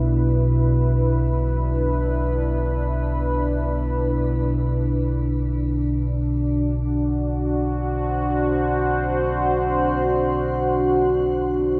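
Ambient in free time, desolate and dark, this brief cut from a longer piece pairs a moody, evolving pad of detuned sawtooth voices and sine sub octave, carrying sustained chords with chorus and shimmer reverb, against a deep, ominous drone whose warbling, vintage rumble sits low beneath it. Both parts hold up front for the full 11.8 seconds, fading in slowly and releasing long, as the harmony moves from Bm to D at 4.2 seconds. A lush hall reverb soaks the mix in a dreamy haze.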